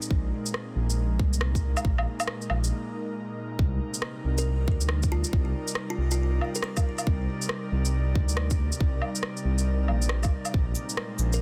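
A deep, rumbling detuned saw bass sits up front with a tight electronic kick, the bass pumping alongside the airy, breathy pad in this ghostly, melancholic future garage excerpt at 138 BPM in C minor, swung on the 16ths. Tape-tinged electronic shaker, rim click, woodblock and cabasa fill out the groove, with soft clipping on the snare, while a glassy harmonics texture drifts in the background with chorus and its own reverb, and the chords move from Bb9sus4 to Cm9 after a break at 2.7 seconds. A woody, hollow kalimba with a bright thumbnail pluck and delay adds short melodic fragments, most clearly from 4.4 to 6.7 seconds, in a dry, dense, heavily limited mix.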